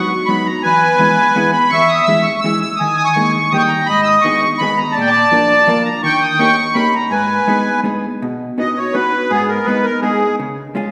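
A musette waltz in 3/4 with a gentle swing and a rubato lilt, this short cut from a longer piece feels nostalgic and charming. The accordion carries the melody up front, its reedy, sweet tone shaded by a light tremolo tuning and a dark, smooth character. Beneath it, a vintage hollow-body jazz guitar, electric, clean and picked, supplies the accompaniment with a dark, compressed sound, also close in the mix. The harmony moves through minor-key changes with suspended and seventh chords, shifting into a second section at 8.2 seconds before the accordion stops at 10.4 seconds and the guitar rings on briefly alone. A wet, reverberant hall surrounds both instruments, with a faint mains hum audible in the background.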